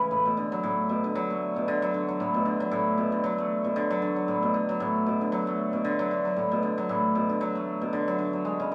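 A gentle swing on the sixteenth notes pushes this 4/4 folktronica fragment along at 115 BPM, giving it a loose, lilting step. A solo cimbalom carries the piece alone from 0.0 to 8.7 seconds, its hammered strings sitting up front with a shimmering, ringing tone in the low-to-middle register from A2 to A3. The harmony rests on a single Bm7 chord in B dorian, tuned slightly below standard pitch at A4 = 439 Hz, which lends the mood a delicate, autumnal cast. A digital delay trails the cimbalom's notes, while a wet studio reverb with a short 0.5-second decay adds an intimate sense of space. Cut from a longer piece, the short passage feels like a quiet, reflective glimpse.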